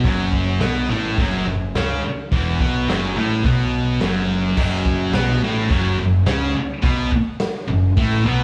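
Garage rock with a swaggering, gritty mood, this short excerpt, cut from a longer piece, moves at 106 BPM in F# minor, sitting on a single F# minor chord as a thick, double-tracked fuzz guitar riff drives up front over a growling, overdriven picked electric bass. A raw garage drum kit with punchy kick, medium-tuned snare, hi-hat and crash carries a dark, saturated tone with a rolled-off top, and it stops at 8.1 seconds, just before the guitar and bass end at 8.4. The whole thing sounds like a live club gig heard through the venue's PA, with light reverb and small room ambience.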